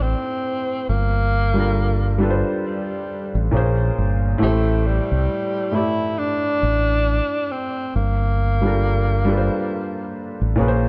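A slow 68 BPM groove in 4/4, swung at 57% on the sixteenths, sets a nostalgic, hazy lo-fi hip hop mood in G dorian, tuned slightly flat to A4 = 437 Hz. From 0.0 s a deep dub fingered electric bass sits up front with a round, punchy, amped tone, anchoring the low end. Alongside it, a felt-muted upright piano plays soft, mellow accompaniment with a thin, intimate felt character, softened further by cassette tape colour and a low-pass filter. Over the top, a clear tenor saxophone carries a jazz-style solo melody with vibrato, subtone and scooped notes, its filtered tone still present, and it drops out at 10.6 s while piano and bass ring on to 10.9 s. The chords drift from Am7 through Gm7 and Bbm7 before returning to Am7 and Gm7. A light reverb and small room ambience frame the dark production of this short cut from a longer piece.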